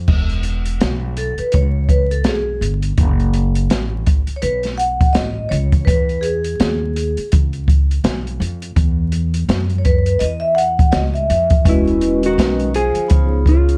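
A dark, crackly production with light reverb frames this cool jazz-hop excerpt at 83 BPM in E major, its swung 16ths carried by a thumpy, woody upright bass and a boomy, smooth drum kit roughened by gritty 12-bit sampler character. From 1.2 seconds a ringing, airy vibraphone with soft mallets and slow motor vibrato takes the solo over chords such as Amaj9, F#m and Emaj7. At 11.7 seconds a clean, fingered hollow-body guitar picks up the melody while a breathy tenor saxophone adds a quiet second line with scooped notes before a closing C#7.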